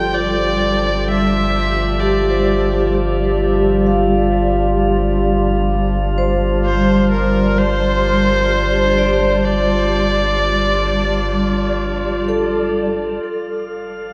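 Soaked in a wet plate reverb with a long tail and heavy echo, this short cut from a longer ambient piece feels peaceful and serene, moving at a slow 64 BPM in 4/4. An earthy, rich electric violin sits up front carrying the melody, a single bowed player using light vibrato and portamento, its lines trailing into dub echo until it stops at 12.3 seconds. Beneath it, a cloudy, blurred granular pad holds sustained chords with a slow attack and a mellow, evolving tone, while a metallic, ringing vibraphone struck with hard mallets plays arpeggios in the background, its fast motor vibrato and boxy small-room tone also fed into dub echo. A deep, round sub bass anchors the low end, a tense, string-like drone hovers barely audible with its own vibrato, and a glassy texture of drifting overtones, thickened by chorus, floats calmly around the harmony. The music rests on Gsus2 before shifting to F at 13.2 seconds, with the vibraphone falling away at 13.7 seconds.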